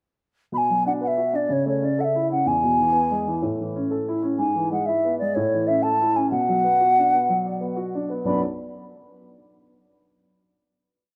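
A hollow wooden flute carries the tune in this short, complete Celtic slide, its pure, mellow tone colored by vibrato and tonguing as it spins motif-based melody in period phrases between C#5 and B5. The mood is driving and wild, moving at 124 BPM in dotted quarters with a straight 12/8 feel in B dorian. Underneath, an upright piano supplies woody bass notes and broken chord figures with long sustain, following a progression that runs from Bm through A/C#, E, A, E/G# and A before returning to Bm. Both instruments enter together at 0.5 s and sit up front, though the flute also carries a slightly distant quality, and a final chord rings out from 8.2 to 10.2 s. A moderate plate reverb lends a lingering tail, and the whole has the rough character of a home demo mix.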